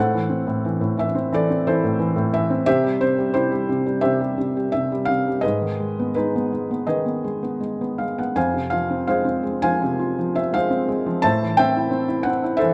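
A felt-muted upright piano opens the recording alone and carries it throughout, a short classical passage cut from a longer piece with a bittersweet, moody character. The instrument sounds soft, mellow and intimate, its notes decaying quickly, with the natural noise of the action audible up close. Played with a rubato feel at an unhurried pace in four, the line ranges from F2 up to A5. The harmony moves from A minor to C major, then darkens to A-flat minor at 5.4 s and F minor at 8.4 s before returning to A minor. A moderate recital-hall reverb surrounds the up-front piano, and the dark, warm production gives the passage an intimate atmosphere.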